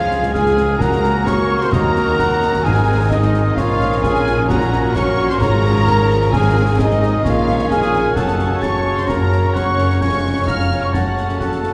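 Drenched in the long, wet reverb of a church or concert hall, this heroic, adventurous cinematic cue is cut from a longer adventure film score and moves in a straight four. A lush symphonic violin section carries the expressive, vibrato-laden melody in the background, joined on a second line by a studio violin section, a very quiet, airy flute ensemble and a solo oboe in classical style, while a rich, even viola section fills in the accompaniment and a cello section and soft-attack double bass section hold the low end. Clear, close-miked trumpet stabs ride over sustained chords from a background French horn section and a very quiet trombone section, concert snare, bass drum and bright clash cymbals drive from 0.1 seconds, and dry, articulate timpani played with hard mallets enter at 0.8 seconds and return at 6.3 seconds.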